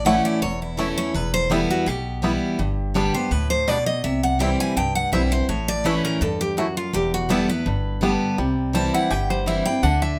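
Virtuosic and joyful, this bluegrass passage, cut from a longer piece, features a bright, full-bodied, up-front picked steel-string acoustic guitar taking a solo melody throughout, while a second picked acoustic guitar supplies accompaniment underneath. A twangy, percussive banjo played with fingerpicks adds its own melodic line from 0.1 seconds, and a woody, thumpy pizzicato upright bass anchors the low end. The chords cycle through A, Em, G and C in a moderate studio room reverb.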